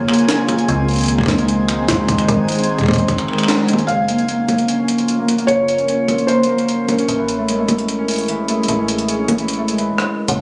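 IDM at 150 BPM in Gb lydian, glitchy and playful, cut from a longer piece: a warbling, detuned tape-like pad holds chords such as Gbmaj7 and Dbmaj9 while a fingerpicked Celtic harp rings out filtered arpeggios through dub echo, over a metallic FM bass and a gritty, pitched-up jungle sampler-style kit of snaps, hi-hat, rim clicks, snare and toms. A tight electronic kick joins at 1.2 seconds and drops out with a band accent at 3.5 seconds, after which a felt-muted upright piano with audible action noise carries a soft, intimate melody, both pad and harp sweep through filters, and a drum fill from 9.9 seconds closes the excerpt. A twinkling granular shimmer sparkles in the background of the opening, and the whole is heard through a digital echo-chamber ambience and club reverb, captured on a phone in the room with a dull top end.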